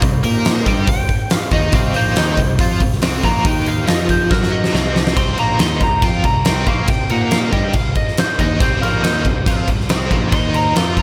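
Blues rock and southern rock power-trio music in C minor at 140 BPM, smoky and brooding, has a huge, up-front arena drum kit with a fat snare and punchy kick driving beneath a biting, double-tracked overdriven guitar riff with tremolo and slapback echo, a growling overdriven picked bass, and a very quiet, gritty tonewheel organ holding sustained chords through a slow rotary speaker, while a twangy, slightly broken-up lead guitar solo enters at 0.9 seconds and a drum fill at 4.3 seconds leads into the repeat of the section, all set in a lush hall reverb for a big arena sound.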